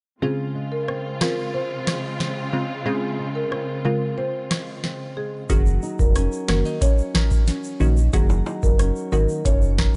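Bouncy and sunny, this dancehall cut moves at 91 BPM in Db major, with a woody marimba melody carrying a digital delay over crisp, warbling wavetable chord stabs, dark thumb-plucked nylon-string guitar arpeggios with finger squeak, and a lush bowed string section holding vibrato-rich chords that pump against the sidechain. A booming analog drum machine arrives at 0.9 seconds, sitting up front with its deep kick, metallic hats, snare and rim click. At 5.5 seconds the strings drop away as the harmony shifts from Dbmaj7 to Gb6, and a full sine sub bass with octave joins alongside close, dry egg shaker and ringing timbales.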